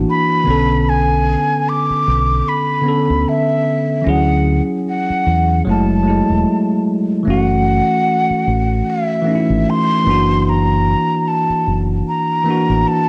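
A breathy, mellow silver concert flute carries the melody from 0.1 s, its tone unsteady, with vibrato and a crisp attack, softened by a low-pass filter and cassette tape haze in this hazy, reflective lo-fi hip hop cut from a longer piece. Beneath it, a bell-like tine electric piano, bright and clean through its built-in speakers and likewise filtered and taped, voices chords from Bm9 and Dmaj9#11 to F#m9 and an F#7alt in F# minor. A deep, round, punchy dub fingered electric bass sits up front, with the whole home cassette recording, at a swung 75 BPM, bathed in moderate spring reverb until the bass drops out at 12.8 s.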